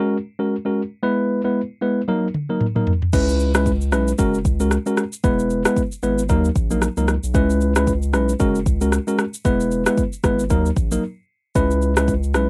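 Opening on a worn, slightly out-of-tune tine electric piano softened by a low-pass filter, this mellow, smooth afrobeats excerpt at 114 BPM in C# dorian swings gently on sixteenths as an up-front afro-pop drum kit with a deep kick, shaker, rim clicks and a tape-warm sound arrives through a drum fill at 2.1 seconds, a round, dark analog bass joins at 3.1 seconds over a cycling F#add9, E, D#m and C#m7 progression, and a brief break at 11.0 seconds interrupts the light-reverb, cassette-home-recorded groove.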